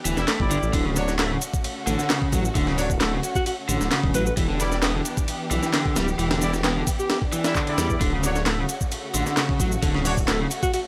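A dry, gritty hardware sound frames this swaggering, raw breakbeat excerpt at 132 BPM, where a pitched-up, compressed sampler kit with thumpy kick and high-tuned snare drives alongside analog shaker and handclaps, a rumbling detuned saw bass, an overdriven guitar riff with 12-bit grit and tape echo, punchy horn stabs, and lush bowed strings pumping under sidechain over Em7 and Dmaj7, while a clear alto saxophone with vibrato and an old record sound carries the melody from 3.4 to 7.2 seconds before an electronic swell enters in the background at 7.3 seconds.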